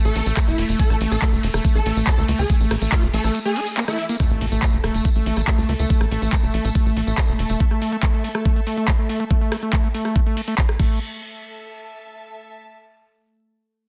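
An intense, psychedelic trance cut opens on a very quiet, evolving wavetable pad and a squelchy, gritty acid bass riff with dub echo, joined at once by a swarming, bright rave lead, a tight, punchy sequencer bass, a jingly tambourine, a garage drum kit with metallic hats and an up-front knocking electronic kick, before a drum fill at 4.0 s brings in a faint impact and a rich, smooth string section in the background that outlasts the other parts, carrying on alone from 11.0 s until 12.7 s, all in a dense, heavily limited mix with little reverb.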